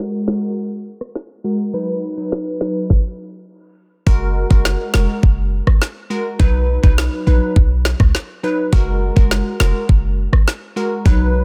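The sound is dense and heavily limited, with a low-pass filter and a dry room. This sunny, bouncy dancehall cut, taken from a longer piece, rides a straight four-beat groove. A glassy wavetable pluck opens the track at 0.0 seconds and carries the chords through a filter sweep. The pluck is crystalline and detuned, with ring modulation, a moving notch and a shimmer of chorus, shifting between F#add9 and B. The electronic island pop drum kit follows at 0.3 seconds, up front, with a knocking kick, rim clicks and a woody snare whose edge is softly clipped. At 4.1 seconds a short 808-style bass joins in, punchy, tight and up front, its sine tone topped with a noise layer, a fast attack and a decaying tail.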